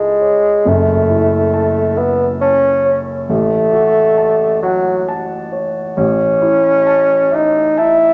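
A mellow bassoon sings a lyrical, up-front solo melody with light vibrato and a smooth top over a dark grand piano accompaniment in this short romantic classical duo excerpt, flowing in an unhurried 3/4 at 67 BPM with rubato through harmonies of A/C#, F#m7, F#m/A and back to A, all set in a moderate recital hall reverb.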